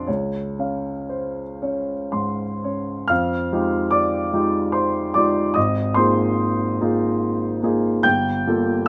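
Impressionist classical solo piano in 3/4, mysterious and wistful, with a free, rubato feel across this short fragment of a longer piece. A clear, open baby grand plays alone from 0.0 to 8.9 seconds, spanning G1 to G6 with long sustain, as lush extended harmonies drift from Dbmaj7 through Fm9 and Ab69 to Gm9. Close, detailed microphones and little reverb keep the instrument up front, with a new section beginning at 3.1 seconds.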